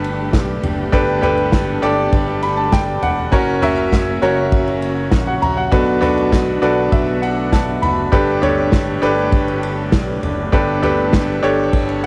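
This piano-driven pop excerpt feels uplifting and anthemic, moving in a steady, straight four. A bright upright piano sits up front with a woody, brilliant tone and long sustain, carrying the accompaniment and stepping out for fills around 2.1, 6.3 and 11.7 seconds. Behind it, a lush studio string section holds soft-attacked bowed chords with vibrato and a sul tasto smoothness, staying intimate and in the background. A fingered electric bass gives a round, dark low end. An acoustic drum kit played with bundle sticks in a small room brings a tight kick, a medium-tuned snare, toms and dark ride cymbal. The piano, strings and drums carry a cassette-tape character, and light studio reverb gives the home recording a gentle sense of space as the harmony moves from Gadd9 through F# and Bm7 back to Gadd9.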